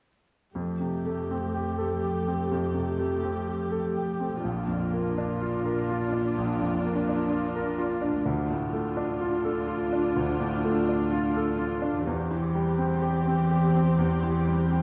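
Sorrowful and bittersweet, this slow, rubato cinematic film-score excerpt at 62 BPM in 4/4 sets a bright, brilliant grand piano up front over a dark, intimate viola section bowed sul tasto with light vibrato and a warm, floating cello section on the bass, all three playing from 0.6 to 14.8 seconds through chords of Fadd9, Bb, Dm and C/E, bathed in a wet recital-hall reverb with vinyl crackle.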